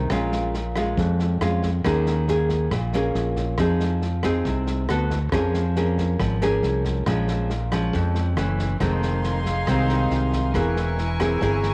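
Bossa nova in F minor at 138 BPM, wistful and smooth, this fragment of a longer piece sets a fingerpicked, classical-toned nylon-string guitar up front alongside a dark, round fingered electric bass, while a muffled, lo-fi vintage drum kit with a punchy kick, rim click and medium-tuned snare sits lower in the mix. The harmony drifts through chords such as Bbm7, Eb7sus4, Fm7 and Db6/F, and at 8.8 s a bowed studio string section with a reedy, gut-string, period-style tone enters with sustained chords before a closing C7b9b13/E. A moderate spring reverb and small room ambience give the recording an intimate character.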